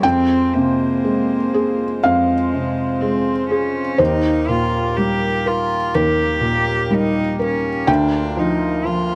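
Melancholic and reflective, this short fragment of neoclassical piano and strings drifts in a rubato 4/4 over Fm, Eb and Bb/D chords, with a felt-muted upright piano carrying the accompaniment up front in soft, mellow tones and audible action noise, an intimate solo cello playing a second line sul tasto with an airy bow and light vibrato, and a reedy, breathing pedal harmonium holding sustained chords beneath, all set in a small room with moderate reverb.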